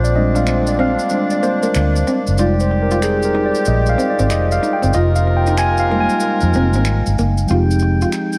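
Introspective and smooth, this short excerpt from a longer piece is a neo-soul R&B groove at 94 BPM in 4/4, with a swung sixteenth-note feel in F dorian. A mellow tine electric piano sits up front and carries a solo from the start to 7.5 seconds, moving over chords that shift from Bb13 to Fm11 and settle on Fm9. Beneath it, a vintage fingered electric bass gives a dark, round, punchy foam-muted tone, also placed up front. A close-miked woodwind section holds warm, tight sustained chords with vibrato, while a jazz-style trombone section adds vintage stabs with light vibrato and slapback echo from the background until 7.1 seconds. A clean, picked hollow-body jazz guitar plays a second line in the background, and compressed, saturated maracas and finger snaps with group handclaps keep time, all set in light reverb and small room ambience.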